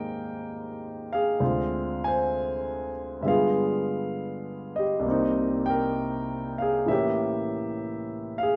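Wistful and melancholic, this brief jazz ballad fragment in C minor moves at an unhurried 66 BPM with a swung 4/4 feel, cut from a longer piece. A single concert grand piano carries the whole passage, sounding intimate and up front with deep bass, long sustain and audible action noise, all set in a large studio's wet reverb. The harmony drifts through rich chords, from Abmaj9 through Dm7b5 and G7b9 to Cm7, before closing on A7b9 at 6.9 seconds.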